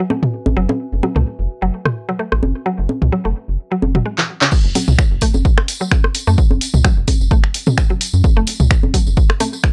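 Swung sixteenths at 129 BPM in 4/4 drive this clinical, quirky minimal techno cut in F# minor, where a filter sweep on a synth arpeggio opens alongside a woody FM mallet-pluck riff with chorus, phaser, delay and sidechain pumping, set over a hollow, rubbery square bass with tube saturation, garage-kit congas, rim clicks and toms with analog delay, and a faint, warbling tape-like pad that stops at 4.1 seconds. At 4.2 seconds an analog drum machine's snaps, claps, hi-hat and crash enter as a drum fill leads into the drop at 4.5 seconds, where a punchy up-front kick and a close jingly tambourine join the dry, gritty mix.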